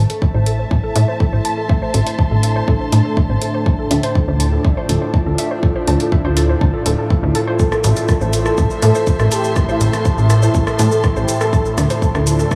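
Melodic techno with a cinematic, hypnotic mood, built on a deep, tape-warm electronic kick and a punchy, funky analog bass placed up front, while an overdriven analog drum machine adds hi-hat, rim click and shaker. A warbling, lo-fi pluck with 12-bit grit and analog delay spins arpeggios over a moody, detuned ambient pad, a dark bowed string section with vibrato, and a very quiet, resonant drone with moving overtones that enters at 1.5 s, with the pad, pluck, bass, strings and percussion all pumping against the kick. At 7.6 s a smooth, expressive portamento lead slides in softly in the background, and the dreamy mix is soaked in cathedral reverb.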